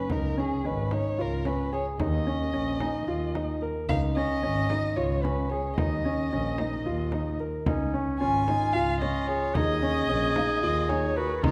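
Set in a wet recital hall, this shimmering, hopeful chamber excerpt in 7/8 puts a dark, woody bowed violin melody up front alongside an intimate, boxy grand piano whose arpeggios carry audible action noise and long sustain. A warm bowed double bass sings with vibrato and portamento beneath, while a deep frame drum played with soft hands and a delicate, bell-like vintage celesta sit in the background. At 7.7 s a bright, classical-style clarinet enters with a second line.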